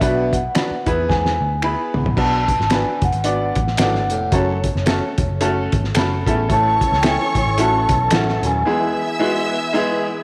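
A swung 4/4 groove at 111 BPM drives this uplifting, uptempo 1960s-style soul fragment, cut from a longer piece and moving from Bm through E, F#m and A. A cloth-damped drum kit sits up front with a muffled, thuddy, lo-fi character, a fat snare, a tight kick and dark cymbals, and it plays a fill from 1.1 to 2.2 seconds, while finger snaps sit close but in the background. A foam-muted electric bass gives a round, dark low end, and a growling, raspy baritone saxophone works a riff behind the other parts with scooped notes and vibrato. On top, a vibraphone with soft mallets carries the melody in a mellow, airy, ringing tone with fast motor vibrato, over a brilliant, woody upright piano accompaniment. At 6.5 seconds a lush, distant bowed string section adds a second line, and a thick, overdriven tonewheel organ enters in the background with sustained chords, chorus vibrato and a fast rotary speaker, all set in a moderate echo chamber reverb.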